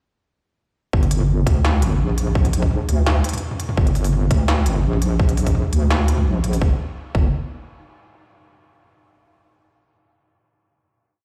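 A dry, stone-room sound played through a big system frames this dark, spacious half-time drum and bass piece at 169 BPM in G minor, where a deep, saturated wobble bass with chorus glides through long, mellow notes from 0.9 seconds beside a tight, layered electronic kick, while a tape-warm industrial kit adds a clanging snare, crisp hats and low toms in a sparse beat until 6.6 seconds, leaving bass and kick to carry the final note.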